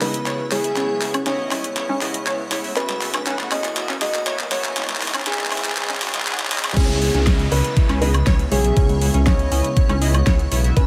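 A dark, boxy grand piano with audible action noise carries the bittersweet, emotional melody of this 120 BPM progressive house excerpt in C# minor, shadowed by a very quiet airy dreamy lead, over a lush unison pad, a punchy wave-folded pluck arpeggio and glossy chorused polysynth stabs, all filter-swept through a build-up with an overdriven pop drum kit fill, background congas and a riser and downlifter, until the drop at 6.8 s brings in a rumbling detuned saw bass and an up-front knocking kick.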